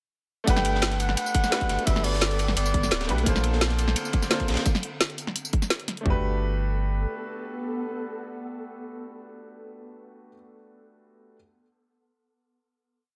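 Uplifting and dreamy, this short liquid drum and bass piece at 172 BPM in G major opens with a warm grand piano holding syncopated chords before a breathy, lightly vibrato flugelhorn sings jazz-style call phrases through a gritty 12-bit sampler sheen and digital delay, while a detuned, wave-folded airy pad pumps and shimmers with chorus and reverb, a round sine sub bass plays a dub-style line up front, two tight electronic kits deliver a two-step kick and rolling woody snares with bright hats and tambourine, and a dark, saturated breakbeat loop sits in the background until 4.7 seconds, after which the remaining drums drop out at 6.1 seconds for a final Gmaj9 chord.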